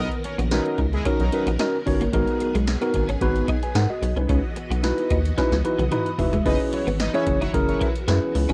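Early-eighties boogie funk at 111 BPM in B major, this short cut from a longer piece has a danceable, feel-good glow, moving through Bmaj7, G#m7, C#m11 and F#7sus4. A rubbery, hollow square bass sits up front and bounces with a resonant filter pluck. Beneath it an electro analog drum machine drives a deep kick, punchy snare, metallic hats, toms and crash, with a drum fill from 5.4 seconds joined by a mellow tine electric piano fill from 5.6 seconds, both running to 6.5 seconds. The electric piano, clean and played through built-in speakers, carries the accompaniment from 0.5 seconds. A dark, compressed clean guitar picks a riff through ensemble chorus, and a lush string machine holds sustained chords with phaser. Fat, nasal analog synth brass adds a brief second line at the opening and again near 6.5 seconds, all under light reverb and the soft haze of a home cassette recording.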